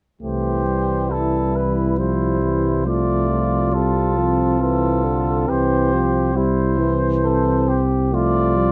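In a rubato 3/4 at 68 BPM, this stately classical brass quintet passage in C major, cut from a longer piece, sets a distant, roomy trumpet melody with light vibrato above a mellow flugelhorn second line, a soft-attacked French horn in the background and a warm euphonium in accompaniment, while an up-front, dark bass trombone holds C2 beneath chords moving from C to Dm7/C and back to C, closing on G5/C, in light reverb.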